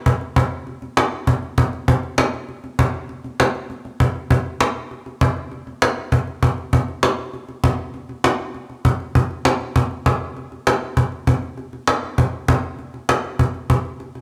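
Pop at 99 BPM in a straight 4/4, this driving, cool excerpt features a lone woody, acoustic cajon with faint snares, placed up front from 0.1 to 14.2 seconds in a dry, gritty recording with moderate recital-hall reverb, and shifts into a new section at 10.1 seconds.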